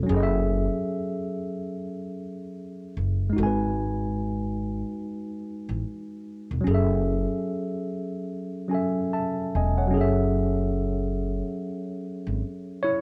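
A swung sixteenth-note lo-fi hip hop groove at 73 BPM in F# dorian sets a hazy, reflective mood, as a worn, slightly out-of-tune tine electric piano with cassette tape coloring moves through F#m7 and G#m7 chords up front, while a woody, growly pizzicato upright bass holds the low end until 12.4 seconds, all within a small room's modest reverb in this short section of a longer piece.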